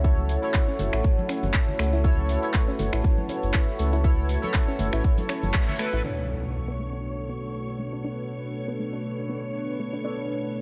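Late-night and moody, this deep house excerpt rides a swung groove, with a punchy, tape-warm kick up front beside a deep sine sub bass doubled at the octave. An overdriven analog drum machine supplies finger snaps, handclaps and filtered hi-hats, while damped congas and a grainy, close tube shaker sit in the background. Above them, a dark, detuned analog pad with 12-bit sampler grit holds sustained chords, and a retro, glossy polysynth plays chorused stabs through tape echo and a filter sweep. A soft, round pluck traces arpeggios beneath a warbling, lo-fi tape-like pad, with sidechain pumping moving through the pads, pluck, stabs and bass, and the band hits an accent at 5.5 seconds. By 6.0 seconds the drums and bass have dropped away, and an electronic impact lands as a silky string machine enters, the harmony shifting from F#m7 to Bm7 under light digital ambience.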